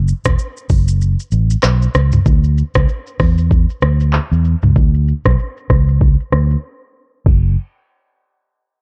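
Afrobeats at 96 BPM in 4/4, this short cut from a longer piece has a sultry, mellow mood and a 16th-note swing. A fingered electric bass, round and amped with a dark edge, holds the low end from E1 to E2 and sits up front from the very start. An electronic afro-pop drum kit enters at 0.1 seconds with a knocking kick, smooth hats, shaker, handclaps, rim clicks, toms and a crash cymbal, its produced sound given an overdriven bite. A filter sweep runs through the opening stretch, and a break arrives at 6.6 seconds before the music shifts into a new section at 7.3 seconds. The production is dark and warm, low-pass filtered and nearly dry, keeping both parts close and intimate.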